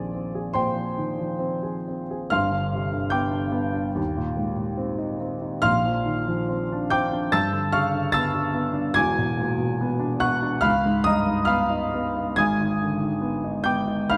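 Impressionist classical solo piano at 72 BPM in 4/4, hazy and dreamy, drifts with an uneven rubato pulse as a present, up-front grand piano with long sustain ranges from E1 to A6 through rich extended harmonies moving from Bb9 and G7 through E9 and Db9 to a closing Abm, set in a dark, reverberant concert hall with a 2.3-second decay across this 14.2-second excerpt.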